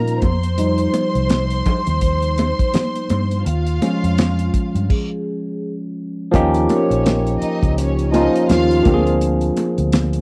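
A barky, bright tine electric piano with phaser solos up front until 6.3 seconds over a bittersweet, smooth 1970s-style soul groove at 83 BPM with a gentle sixteenth-note swing, carried by a round, foam-muted electric bass, a dry, damped drum kit with a fat snare and dark cymbals, high-tuned congas and a ringing vibraphone in the background, while a soft, sul tasto string section with vibrato plays a second line until 9.0 seconds, all in a studio reverb with a cassette-tape haze and a stop from 4.9 seconds.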